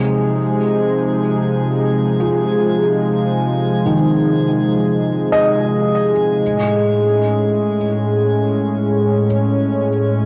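Cassette sound fills a home recording, bathed in a wet spring reverb that gives this melancholic, reflective ambient fragment a hazy, intimate room. A warm, detuned sawtooth pad sits up front from the start, holding smooth sustained chords with a soft attack, long release and a gentle chorus shimmer. Almost at once a faint, glassy texture of sine-like harmonics drifts high above, its calm overtones softened by chorus and its own reverb, while a fade-out on the synth texture runs through the whole passage. At 2.2 seconds a felt-muted upright piano joins with mellow, dark arpeggios, its thick-felt tone carried by a tape echo. The harmony floats in free time from Fm7 to Amaj7 at 6.4 seconds, and the piece is cut from a longer work.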